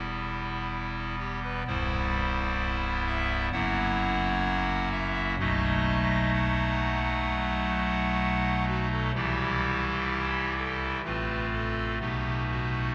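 A pipe organ's hollow clarinet stop, with baroque voicing and a touch of chiff, sits up front as the lone voice in this dark, grave classical chorale, moving through chords from Em and Cmaj7 to F#7 and B7 under a cathedral reverb that lingers for about 5.5 seconds, in a short passage cut from a longer piece.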